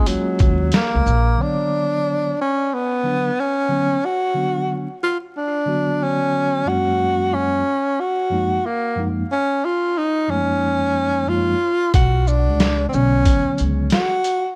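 A dry, close sound with little reverb and a layer of vinyl crackle frames this cool, relaxed jazz-hop excerpt at 91 BPM in 4/4, with a swung 16th-note feel moving between F#maj7 and Bmadd9. Up front, a breathy, whispered tenor saxophone with vibrato carries the melody through analog delay, over a clean tine electric piano heard through its built-in speakers. A muffled, compressed, tape-warm sampler-style drum kit with a thumpy kick and a woody, growly pizzicato upright bass play only until 1.3 seconds, then return at 11.9 seconds.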